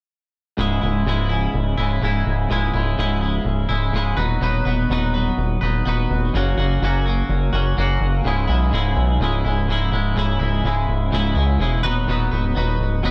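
A twangy electric guitar and a gritty driven synth bass enter together at 0.6 seconds in this dark, cathartic rock excerpt, moving at 125 BPM in a straight 4/4 feel in C# dorian. The guitar plays bright, clean, picked arpeggios drenched in lush chorus, while the aggressive, saturated sawtooth bass adds a resonant filter pluck and sits slightly louder beneath it. The chords move from C#m through B/D# to F#, then return to C#m at 8.3 seconds for a second passage that settles on B, all in a dry, up-front mix.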